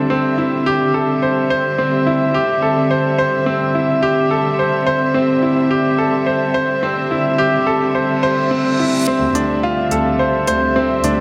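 A straight 4/4 pulse at 107 BPM carries this intimate, moving piano and strings electronica fragment, where a bright, polished grand piano riff with analog delay sits up front over dark, close sul tasto sustained string chords with light vibrato, moving from Am7/D to Dm7. An electronic reverse cymbal and riser arrive at 8.1 seconds, a soft-attack cello section adds a floating bass note from 9.2 seconds as the build-up starts, and smooth, high-passed electronic hi-hats slip in at 9.4 seconds. A 2.8-second plate reverb soaks the whole mix in a dreamy haze.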